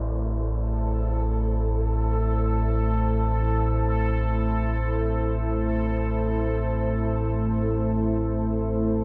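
A cavernous, dark production bathed in moderate, huge reverb frames this unsettling dark ambient drone excerpt, where an ominous, rumbling low drone carries a filter sweep throughout beneath a moody, detuned pad of sustained chords with chorus, while a mellow, resonant texture of bubbling random filter steps enters at 0.3 seconds.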